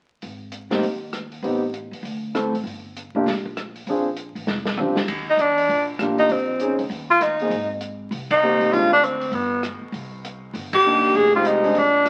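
A breathy tenor saxophone takes the solo up front from 5.3 seconds, its vibrato and scooped notes sitting over a dark, mellow baby grand piano that comps with long sustain in this swinging, playful slice of small-group jazz at 198 BPM in Eb major. Underneath, a woody pizzicato upright bass and a muffled vintage drum kit with dark cymbals and a punchy kick drive the swing, with a drum fill at 4.5 seconds leading into the second section and band accents at 8.3 and 10.7 seconds. The whole cut sits in a studio reverb with the crackle of a very old 78 rpm record.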